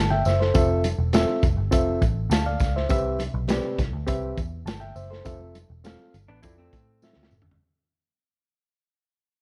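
Lightly reverberant, cassette-toned audio carries this short, uplifting and danceable uptempo 1960s-style soul cut at 102 BPM in 4/4, where a gritty, saturated breakbeat drum kit with a tight kick sits up front beside a round, foam-muted picked electric bass and a reedy, lightly overdriven electric piano moving from C through Fmaj7 and Cmaj7, while very quiet, bright congas and a jingly tambourine in the background fill out the groove, a dark, clean hollow-body jazz guitar riff slips in at 6.3 seconds, and a drum fill at 7.0 seconds closes the fading excerpt.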